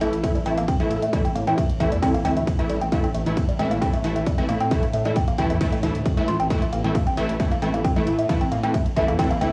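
Tape-worn, with a short booth ambience, this fragment of driving, dark peak-time techno is led by an up-front, heavy electronic kick and a softer kit of tape-softened hi-hats and ride. A woody, wave-folded pluck riff and thick, aggressive rave stabs, both warbling with chorus, delay, sidechain pumping and a gritty vintage sampler edge on the stabs, ride over a deep, rumbling detuned saw bass. From 1.7 seconds a very quiet, swarming drone adds a tense, granular shimmer beneath.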